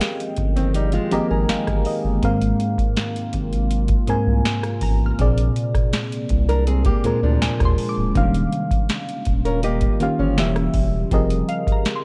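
Contemporary R&B with a tender, romantic mood, moving at an unhurried pace in this short section cut from a longer piece. A booming analog drum machine sits up front with a deep kick, crisp snare, rim click and metallic hats, joined from 0.4 seconds by a thick, saturated sub bass with a sine-like body. A mellow, warbling FM electric piano carries the accompaniment close to the listener, with a fill near the start, while a deep, moody sawtooth pad with chorus and built-in reverb holds sustained chords in the background. A small, dark nylon-string guitar fingerpicks arpeggios through tape echo from 0.6 to 10.5 seconds, and a glassy, crystalline wavetable pluck adds high texture with chorus and tape echo. The harmony drifts through lush extended chords such as Fm11, Ab69, Bb9 and Eb9, passing through Edim7 before returning to Fm11. The whole recording carries a worn, cassette-like character with warbly pitch drift.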